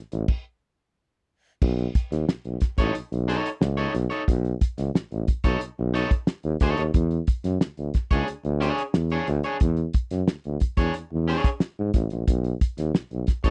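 A warm tuba with scooped notes sits up front in this driving, sly funk excerpt at 90 BPM, carrying the bass line in a pop style over a damped 1970s drum kit with dark cymbals, a fat snare, a tight kick and a rolled-off top roughened by vintage 12-bit sampler grit. The harmony settles on B9 at 1.6 seconds, and at 2.8 seconds a picked, twangy electric guitar enters, slightly broken-up, before the chords move to E13. The sound is dry and close, like a 1970s studio, with little reverb.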